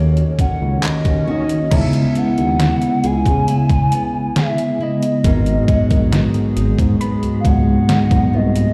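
Contemporary R&B at a slow 68 BPM in C# dorian, longing and sensual. At 0.2 s an up-front, overdriven, detuned 8-bit drum machine enters with thumpy kick, snare, hi-hat, handclaps and crash. It joins a dark sawtooth synth bass, a mellow tine electric piano and a small, fingerpicked nylon-string guitar with digital delay in the background. A hollow, woody clarinet-like synth lead carries the melody through chorus and delay over a detuned, flute-like pad with sidechain pumping. A brief electronic swell appears at 0.6 s, and a soft round pluck joins at 1.7 s as the chords move through D#m7, C#m7 and G#m7.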